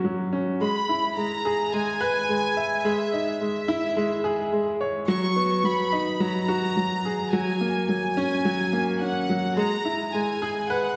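Intimate and melancholic, this short electronica cut from a longer piece pairs a woody, up-front upright piano riff, heard alone for the first 0.6 seconds, with a chamber violin section that enters at 0.6 seconds carrying the melody high above. The bowed strings are close and soft-attacked, with light vibrato and a hushed sul tasto tone, while the piano's notes decay quickly. A generous scoring-stage reverb surrounds the pair as the chords drift through minor-tinged colours.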